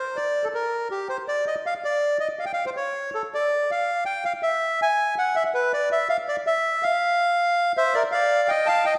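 Tango for solo bandoneon in 3/4, played rubato with a dramatic, passionate mood, its reedy, up-front voice ringing through the long reverb of a church or concert hall in this brief excerpt cut from a longer piece, moving from an opening passage into a new section at 7.9 seconds.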